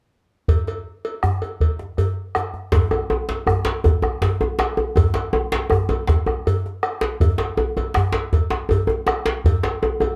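West African traditional drum music in 12/8, earthy and powerful, where a round bombo, a metallic cowbell set back in the mix and a tight djembe with rattling metal jingles played by soft hands open together, before a second, compressed and saturated djembe enters up front at 2.7 s, all within a dark production touched by light reverb in this short section cut from a longer piece.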